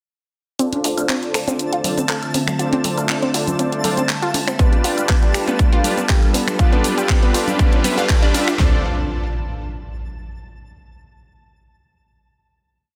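Dreamy and expansive, this progressive house piece at 120 BPM in D dorian is one long build from 0.6 seconds, moving from Dm7 to G7. An arpeggiated analog pluck, smooth supersaw stabs with a cassette-tape tinge, and a lush, thick unison pad all carry filter sweeps and sidechain pumping. Around them sit a programmed pop kit of snaps, claps, hats and shaker, a background tribal loop of congas and woodblock, a very quiet, funky galloping bass, and a sparkling granular shimmer on one held high note. A punchy, overdriven big-room kit with four-on-the-floor kick and huge snare lands up front at 4.6 seconds, and a quiet riser and impact carry the dense, heavily limited mix into a final Dm7 chord at 8.6 seconds.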